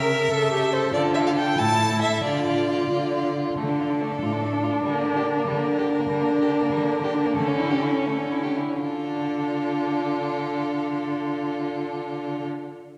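A rich, focused cello sits up front and close, its vibrato-laden bass line anchoring this stormy, dramatic fragment of a quick classical-period movement for string quartet. Above it, two clear violins play together for the whole 12.5 seconds: the first carries the melody with a smooth, even vibrato and a close presence, while the second traces a lower supporting line with lighter vibrato. The warm viola fills the middle with expressive accompaniment, colored by vibrato and portamento. The music moves in 6/8 with a rubato feel, passing through several sections, and broadens noticeably as it slows from 5.5 to 8.8 seconds before settling back onto a D minor chord. The quartet is heard in a church or concert hall, with a generous, wet reverb that lingers around the bowed strings.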